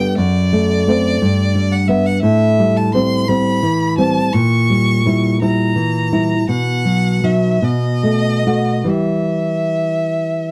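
In a rubato 6/8 sway, this elegiac, yearning excerpt from a romantic duo sets a focused, bowed solo violin singing the melody with vibrato over a dark, thumb-plucked nylon-string classical guitar, whose audible finger squeaks and stronger level ground the accompaniment, both up front in a modest booth ambience as the harmony moves from D7/F# through A#dim7 and B7 to settle on Em at 8.9 seconds.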